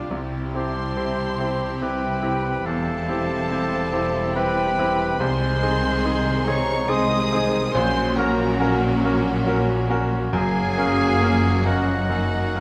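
Lush and passionate, this excerpt from a romantic movement for piano and orchestra moves at 70 BPM in a rubato 3/4, with a bright, brilliant grand piano carrying the melody up front over a dark, woody violin section that shares the tune high above. Around them, clarinet, a hollow silver flute, an oboe and a sul tasto second violin section weave soft background lines, while a very quiet viola section adds accompaniment and French horns hold sustained chords beneath. Cellos with expressive portamento and smooth double basses anchor the bass, all set in a concert hall reverb as the harmony shifts from C through Ab/C to Gb.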